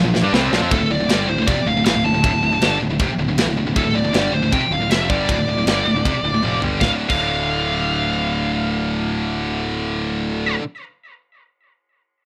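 A bright, very quiet string section and a double-tracked overdriven guitar sound for just the first 0.7 seconds, joined by a drum fill and by two heavy high-gain rhythm guitars and a growly fuzz bass that keep playing throughout. After that, a dark, distorted lead guitar carries the melody over the relentless, epic D minor heavy metal riffing at 157 BPM, driven by a tight, mid-forward drum kit with a rolled-off top that drops out at 7.2 seconds, all in a rough home demo mix with light reverb.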